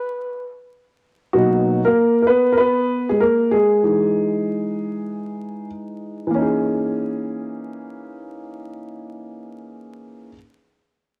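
A home cassette recording with vinyl crackle, wet spring reverb and small-room ambience frames this mellow, cool hip hop excerpt at 96 BPM, swung on the sixteenths in C# dorian. A breathy, up-front flugelhorn with cassette-tape colouring plays a jazz-style B4 with light vibrato, a soft attack and scooped notes for just the first 0.6 seconds. From 1.3 seconds a dark concert grand piano plays alone, intimate and smooth with deep bass, long sustain and audible action noise, moving through Bmaj7 and Emaj7 before settling on C#m69.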